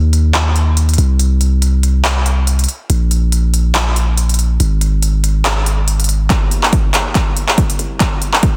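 Future bass in C minor at 141 BPM, this short cut from a longer piece feels bittersweet and lush, moving in a half-time 4/4 with a light swing on the sixteenths. A long, sustained 808-style bass sits up front from the start, deep and mellow with a sine-like body, fast attack and gradual decay, roughened by tube saturation and pumping against a sidechain. A big-room dance drum kit enters at 0.1 seconds with handclaps and crisp hi-hats, its layered, overdriven sound re-recorded in a large room, with filtering taking the edge off the hats, snare and room. At 6.3 seconds a new section begins as a build-up and drum fill, and a punchy, overdriven electronic kick joins the kit up front. Light reverb surrounds a dense, heavily limited modern master.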